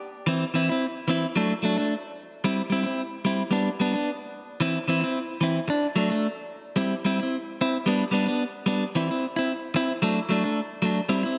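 Highlife in a carefree, warm mood, this short excerpt cut from a longer piece features a lone clean electric guitar playing by itself from 0.3 seconds to 11.4 seconds. The guitar sits up front with a picked, compressed tone and a scooped midrange, staying within a modest span from E3 to E4. It cycles through an easygoing progression of C/E, D, C and G in a straight 4/4 feel, with the harmony shifting roughly every second. A moderate spring reverb gives the sound a gentle sheen and a sense of space, while the top end is rolled off, keeping the overall character mellow rather than sharp. Around 7.9 seconds the music moves into a new section that returns to the same cheerful chord movement before the excerpt ends.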